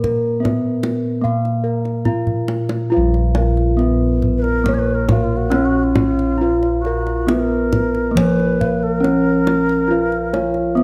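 Closely miked and nearly dry, this shimmering, stately Javanese gamelan excerpt moves at 69 BPM in 4/4 in a Bb pelog tuning. A ringing bronze metallophone carries the melody over round, beating bossed gongs, one up-front set playing arpeggios and another holding the bass, while a tight kendang supplies percussion and plays a fill at 2.3 seconds. A soft, mellow second metallophone adds background arpeggios from 2.9 seconds, and at 4.4 seconds a bright, airy low xiao enters with an expressive, tongued second line coloured by vibrato.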